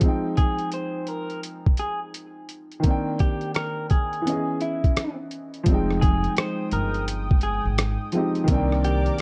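Hazy and reflective, this lo-fi hip hop excerpt moves at 85 BPM in 4/4 with a swung sixteenth feel, sitting in F minor over Fm9, Cm9 and Dbm9 chords. An upright piano with a woody, smooth, short-sustained vintage tone carries the accompaniment up front through cassette tape, beside a muffled, compressed sampler-style drum kit of hi-hat, thumpy kick and rim click roughened by 12-bit grit. From 0.4 seconds an electric guitar through a small old amp plays the melody, its fingered, lo-fi tone slightly broken-up and bathed in spring reverb. At 5.7 seconds the second section brings in a dark, acoustic pizzicato upright bass on gut strings, up front, along with a quiet, soft-attack pad of detuned sawtooth with chorus and a long release. Light reverb and a dark, warm production wrap the whole piece in a dusty, late-night glow.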